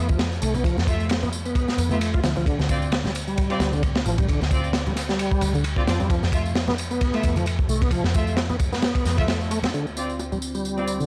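Dry, gritty and dusted with vinyl crackle, this raw, energetic breakbeat clip swings at 132 BPM in D dorian, pairing a reedy, key-clicking tonewheel organ riff on slow rotary speaker with a round, foam-muted overdriven picked bass, a saturated, up-front breakbeat kit of tight kick, snare and dark ride, a tape-warm tambourine, very quiet close congas and bongos and lush, intense string stabs, until at 9.7 seconds the kit and bass stop and a swirling, sidechain-pumped phased analog pad enters as filter sweeps run through it and the organ.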